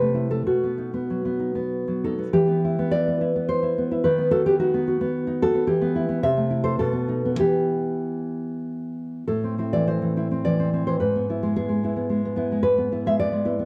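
A lone nylon-string guitar opens this short romantic excerpt, its dark, full-bodied tone sitting up front in a recital hall's moderate reverb, captured with close, detailed microphones. Played in a flexible, rubato three-time, the passionate yet intimate phrasing moves through minor-key harmony that settles on its home chord around 7.4 seconds. At 9.3 seconds a new section begins, carrying the solo voice onward until the cut at 13.7 seconds.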